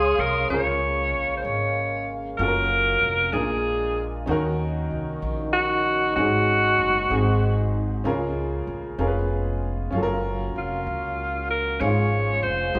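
Soulful and jubilant, this slow gospel passage in 6/8 at 64 BPM, in Db major, has a bright, punchy alto saxophone carrying the melody up front with light vibrato. It rests from 7.7 to 10.6 seconds before returning, over a clear, worn grand piano and a woody, dark pizzicato upright bass, while a soft, flute-like tonewheel organ with slow rotary speaker sounds only in the first half second before a French horn section takes over the sustained chords in classical style. The band plays live in one room, bathed in wet large-studio reverb, moving through chords such as Dbmaj9, Gbmaj7, Ebm7 and Ab7sus4 in a fragment cut from a longer piece.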